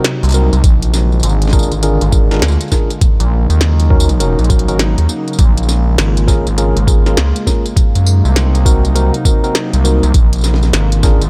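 A nasal, wave-folded synth bass with tube saturation sits up front from 0.2 seconds in this swaggering, playful glitch hop excerpt at 101 BPM in Bb minor, swung on the sixteenths, with a thumpy, pitched-down electronic kick entering at 0.6 seconds beside a glitchy kit of clicky hats, tiny snare and tambourine, while a clean tine electric piano plays stabs through a combo amp with diffuse ambient delay and a warbling, nostalgic, lo-fi pad sustains chords with chorus, both pumping with sidechain compression over a progression that moves through Cm7b5, Bb7, Ebm7 and Bbm7.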